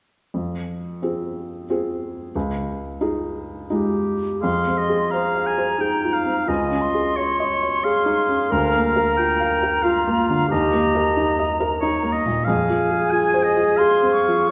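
A felt-muted upright piano opens this bittersweet cinematic passage at 0.3 seconds, its soft, intimate tone sitting up front with a short sustain and thin felt character as it accompanies in F minor. The music moves in a rubato 3/4 at roughly 81-93 BPM, shifting between Fm and Dbadd9 before passing through Bb/D and Eb and returning to Fm. A mellow clarinet enters at 3.7 seconds as a solo second line in a classical style. At 4.4 seconds a clear oboe with light vibrato and a soft attack joins up front, alongside a hollow, pure concert flute with warm vibrato and tongued notes in a higher register. The scoring stage reverb gives the ensemble a wet, spacious glow that deepens its longing mood, and the passage is cut from a longer piece.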